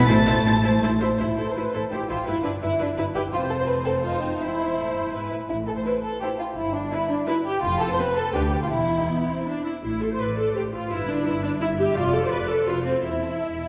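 Dramatic and stormy, this quick classical-period movement for string orchestra in A minor drives along at 167 BPM in 3/4, with focused first violins carrying the melody high above a dark, expressive second violin line, rich, even violas filling the accompaniment from 0.1 seconds, and soft-attacked cellos joining woody double basses on the bass, all bowed with vibrato and heard from further back in a reverberant concert hall as the harmony cycles from A minor through F toward E.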